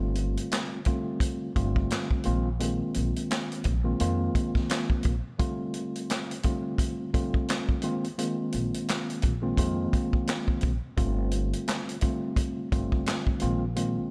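Warm and soulful, this short boom-bap hip-hop excerpt rides a relaxed 86 BPM groove in 4/4 with a lazy swing on the sixteenths. A mellow tine electric piano sits up front with a clean, direct tone, colored by a cassette tape character and filtering that trims both its low and high ends as it moves between G9sus4 and Bb9sus4 chords. Beneath it, a pizzicato upright bass with steel strings gives a woody, warm low end. The vintage acoustic drum kit enters at 0.2 seconds, bringing a punchy kick, a medium-tuned snare, hi-hat and handclaps, all with a natural studio-room sound and a rolled-off top. The mix stays dry and close, with little reverb, keeping the loop intimate and grounded.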